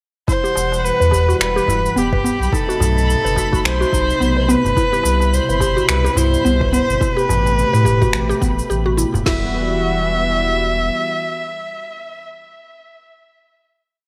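Organic downtempo with a mystical, earthy mood, led by a clear, up-front bowed kamancheh singing a free melody with vibrato and portamento over a smooth detuned analog pad, a woody mallet-like synth pluck cycling a 16-step arpeggio under a filter sweep and phaser, a sine sub bass in a dotted rhythm, and a swung organic layered beat of afro-pop kit with deep kick and gated reverb, overdriven electronic shaker and finger snaps, and a crisp darbuka in the background, all set against a twinkling granular high note in a bright 1980s-style digital sheen, before the groove drops away at 9.3 seconds to leave a final chord ringing until 12.3 seconds.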